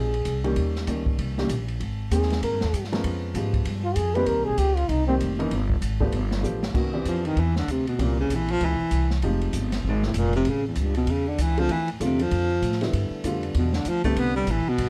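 A breathy, whispered trombone opens this swinging small-group jazz excerpt at a brisk 194 BPM, its scooped notes soloing over a warm baby grand piano with audible action noise, a woody, thumpy upright bass up front, and an airy drum kit with dark cymbals and a boomy kick. The trombone stops at 5.1 seconds, and a drum fill at 6.4 seconds leads the music from A-flat major into C major. At 7.1 seconds a mellow, close-miked baritone saxophone takes over the solo with subtone and light vibrato, set in plate reverb within a dark, warm production.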